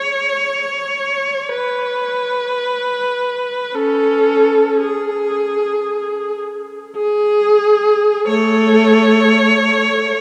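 This is an expressive classical piece for unaccompanied viola, a short fragment cut from a longer work that runs just over 10 seconds. The mood is serene and lyrical, with a slow, free tempo of roughly 42 to 58 BPM in 4/4, shaped by rubato throughout. A single bowed viola plays alone from start to finish, its rich, smooth and even tone carrying vibrato across a range from A3 to C#5. The instrument sits up front in the mix, yet it has a distant quality within a cathedral reverb whose decay lasts about 5.2 seconds. The overall production leans dark and warm, giving the solo line a serene, lyrical atmosphere.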